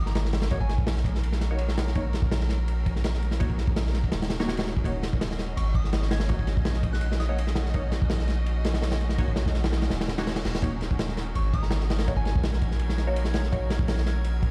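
A deep, long 808-style sine bass sits up front through this frenetic, dark drum and bass and jungle excerpt at 166 BPM in Eb minor, joined by a crunchy, saturated breakbeat kit of tight kick, medium-tuned snare and dark ride cymbal with a rolled-off top. Lush, bowed studio strings hold sustained chords with vibrato, while muted, detuned dub chord stabs with phaser, subtle chorus and dub echo, and a soft, pure FM synth bell with chorus, phaser, 12-bit sampler grit and dub echo, sit in the background. A very quiet electronic reverse cymbal arrives at 10.2 seconds, and a calm, glassy drifting-overtone texture enters at 11.4 seconds, all set in a bare-room sound system ambience with large studio reverb and vinyl crackle.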